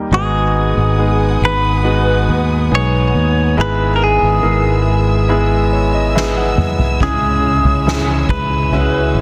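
A clear, intimate concert grand piano sits up front in this melancholic, emotional pop ballad excerpt, its audible action noise, deep bass and long sustain carrying the accompaniment over G#m7, E/G# and C#m chords, with a fill of its own from 5.3 seconds. A bright, twangy clean electric guitar, recorded direct and compressed, picks the melody through phaser and digital delay. Beneath it, a round, dark fretless electric bass with subtle chorus sits up front, while a lush studio string section holds sustained chords with expressive vibrato and a smooth top. A soft-mallet drum kit of kick drum, snare and toms enters at 6.2 seconds with a fill, its kick boomy and its snare medium-tuned. At 7.0 seconds a very quiet fingerpicked steel-string acoustic guitar adds warm arpeggios, all set in light reverb within a dense, heavily limited modern master.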